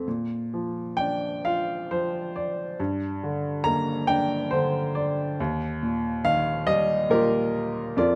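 In a flexible, rubato 3/4 at around 64-73 BPM, this melancholic, wistful classical excerpt features a lone upright piano, clear and woody, close and up front in a moderate recital hall reverb, moving through Bb, Gm and Ebadd9 across a lyrical span from Eb2 to Bb5, tuned to A4 = 438 Hz.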